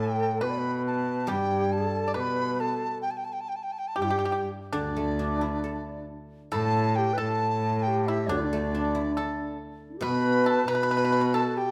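Chinese traditional chamber music, graceful and festive, moves in a free, rubato two-beat pulse through a brief passage cut from a longer piece, shifting to a new section at 6.5 seconds. Up front, the large dizi carries the melody with a buzzing membrane, airy vibrato and crisp attack. Alongside it, a bright, reedy end-blown xiao, a dry, percussive fingerpicked pipa and a nasal, gut-string period-style bowed cello weave second lines, while the guzheng's silvery, ringing accompaniment sounds throughout in a moderate scoring-stage reverb.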